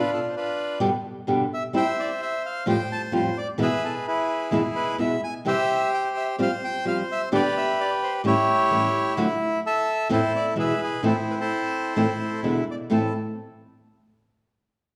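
Sultry and tense, this short tango cut moves at 129 BPM in a loose, rubato 4/4 and settles in A minor. A reedy, dark and airy bandoneon carries the melody up front from the start, while a fingerpicked flamenco guitar joins at 0.8 s as close, warm accompaniment. The chords wander through G, F and E before landing on A minor at 12.9 s, all bathed in the rich ring of a recital hall.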